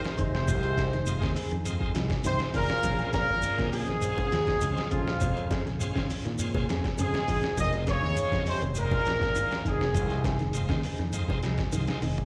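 A gritty, pitched-down sampler-style kit drives this intense afrobeat cut in a straight four, its thumpy kick and medium-tuned snare set up front over a round, punchy fingered bass. A grainy shekere sits close and dry alongside, and soft-handed congas enter very quietly at 2.8 seconds. A tight, roomy horn section carries the melody with slapback echo, while a clear trumpet with vibrato adds a very quiet second line and a veiled, cup-muted trombone section plays its own second line low in the background, also with slapback echo. Two clean electric guitars fill the middle: a dark, hollow-body semi-hollow plays very quiet arpeggios, and a mellow one with phaser and slapback echo plays stabs from the background, as a bright tonewheel organ shouts with key click, light overdrive and a slow rotary speaker. The harmony moves from Fm7 to Bbm9 and back, the horns stop at 10.3 seconds, and a drum fill arrives at 12.0 seconds to close this driving passage, all heard through a venue PA with recital-hall reverb and small-room ambience.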